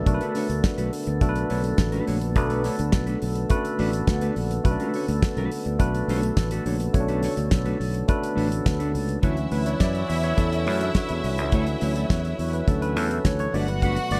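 A growly, punchy fingered electric bass and a dry 70s drum kit with a fat snare and tight kick sit up front in this celebratory, danceable disco excerpt at 105 BPM in D major, where a worn, slightly out-of-tune tine electric piano plays a fill at 3.5 seconds over Bm7 and then takes a solo from 9.2 seconds over Dmaj9 moving to Gmaj9, backed by a percussive tonewheel organ with key click and slow rotary speaker, a dark, clean electric guitar in the background, and a lush, bowed studio string section with vibrato that enters at 9.2 seconds, all set in studio reverb.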